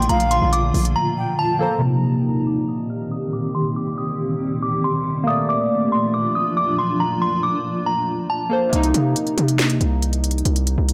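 A hard-hitting yet melancholic half-time trap cut at 139 BPM in C dorian opens with a tinkling FM tine bell melody, a brief airy jazz flute line with vibrato, glassy wave-folded digital keys with chorus and phaser, a cloudy granular pad of blurred sustained chords, a punchy 808-style bass and a trap kit of finger snaps, crisp hi-hats and a sharp snare, before the bass and drums drop away and the keys ride a filter sweep from 1.8 s until the bass and drums return at 8.7 s beneath the keys in an echo-heavy, lightly reverberant digital space.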